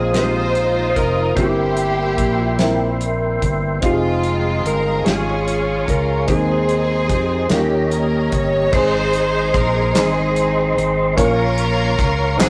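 Opening this slow, uplifting gospel passage in 6/8 at 49 BPM in Ab major, a dark, slightly broken-up electric slide guitar and a lush, distant string section carry the melody over a woody, boxy upright piano, a very quiet, mellow French horn section, a soft, flute-like tonewheel organ with slow rotary speaker and chorus vibrato, an up-front fingered electric bass, and a soul drum kit with a tight kick and medium-tuned snare. The slide guitar drops out at 7.5 seconds and the horns at 8.7 seconds as the reverent harmony moves from Eb7 home to Ab and on to Bbm, and crisp group handclaps enter in the background at 10.0 seconds. A moderate stone-room reverb and a rough rehearsal-room sound frame the performance.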